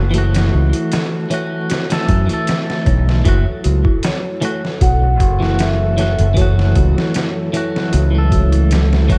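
A hypnotic, cinematic trip hop excerpt in F# minor at 77 BPM opens on an F#m7 with clean, twangy electric guitar through tremolo and tape echo, an eerie detuned FM synth bell in the background, a bright, punchy fingered bass up front and a barely audible breathy wind texture, joined at 0.1 seconds by a gritty, pitched-down sampler drum kit with a thumpy kick in a small room, before very quiet vintage string-machine cellos swell in at 3.3 seconds and a mellow soft-mallet vibraphone carries a gritty, tape-echoed melody from 4.1 seconds, all under vinyl crackle and light digital ambience.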